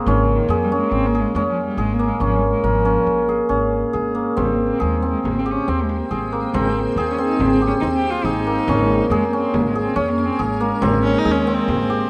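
Contemporary chamber music in a restless 5/4 at 140 BPM in Ab major, where a ringing, hammered cimbalom spins arpeggios up front over a woody pizzicato upright bass and a sul tasto cello melody with an airy bow, joined by a deep, distant frame drum at 4.4 seconds, an ethereal granular pad in the background from 6.2 seconds, and a biting viola second line at 11.0 seconds in this short cut from a longer piece, recorded with close, detailed microphones and light reverb.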